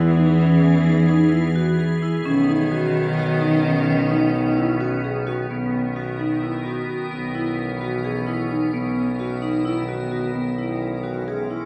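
A dark, woody bowed cello sits up front as a second line until 5.2 s, while a ringing vibraphone with medium mallets plays arpeggios, a distant tuba with light vibrato carries the bass and an icy, crystalline glass pad with chorus holds sustained chords in this playful, shimmering contemporary chamber piece in 7/8 at 260 BPM in eighths, in B major, moving from E and Badd9 to Bmaj7, C#m7/B and E6/B within a recital hall reverb, cut from a longer work.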